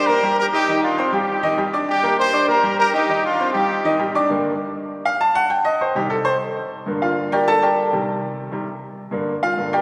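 A straight 4/4 pulse at 199 BPM drives this passionate Latin cut, taken from a longer piece in G minor and tuned slightly sharp of standard pitch. A clear, punchy horn section carries the melody up front in a pop style, with light vibrato and a smooth top, and drops out at 4.0 s. A brilliant baby grand piano supports it with accompaniment across a broad span from low bass to high treble, then takes a solo from 4.3 s to the end at 9.8 s. The harmony swings between G minor and C minor throughout, keeping the energy restless and urging forward. A wet church reverb with a long three-second tail gives the recording the spacious feel of a church or concert hall.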